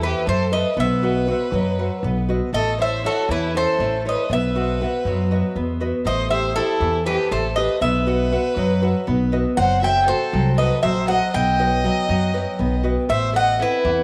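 Moving in a straight 7/8, this dramatic, tense Greek folk excerpt sets an up-front, metallic bouzouki melody with double strings and tape echo over bright fingerpicked classical nylon-string guitar and a woody, thumpy pizzicato upright bass, while a single warm bowed violin adds an expressive second line with vibrato and portamento, all in a moderate echo-chamber reverb.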